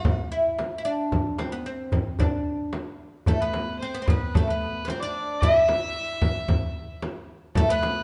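A wet stone-room reverb surrounds this soulful, hypnotic passage of Arabic maqam ensemble music, cut from a longer piece and played live by a band together in one room, with a rounded, mellow top end. Up front, a fretless oud carries the melody, its plectrum-plucked double strings giving a woody, deep, warm acoustic tone. A large frame drum, also close, is played with soft hands, while a clay-shelled darbuka with natural skin sits back in the background. At 3.3 seconds a single bowed dark violin joins as a second line, distant and reedy, with a nasal, gut-string, period-style character. The straight 4/4 pulse gives the whole passage a steady, trance-like pull.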